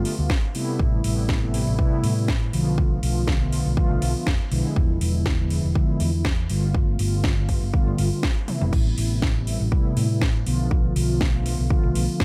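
A punchy, tape-saturated electronic kick sits up front in this short nu-disco excerpt, entering at 0.3 seconds and driving a 121 BPM groove in 4/4 with a light 16th-note swing. A house drum kit enters just before it, at 0.1 seconds, layering a cracking snare, metallic hi-hats, crash cymbal and toms, all re-recorded in a small room, with a drum fill at 8.5 seconds. Beneath them, a dark, round, hollow-body short-scale electric bass is fingered low in its range and pumps against the sidechain. Mellow synth brass carries the accompaniment from the start, its detuned sawtooth tone brassy and sustained with a fast attack, a filter sweep, vibrato, chorus, delay and a cassette-tape character. The chords move through G9, Am9, Bm7b5 and E7b9 in A minor, giving the dry, close-sounding mix a cosmic, sensual mood.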